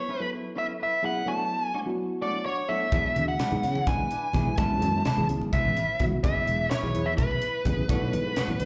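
Funky and driving, this electric jazz fusion excerpt moves at 253 BPM in 7/8 in B dorian. An up-front, dark, overdriven lead guitar carries the melody over mellow tine electric piano and bright, twangy clean guitar stabs, and all three carry slapback echo. At 2.9 seconds a growly fretless bass with ensemble chorus, a crisp fusion drum kit with a high-tuned snare and punchy kick, and low-tuned congas in the background join over chords of F#7sus4, Bm9, E7 and Amaj9, all heard as a live gig through the venue's PA with club reverb and a dull top end.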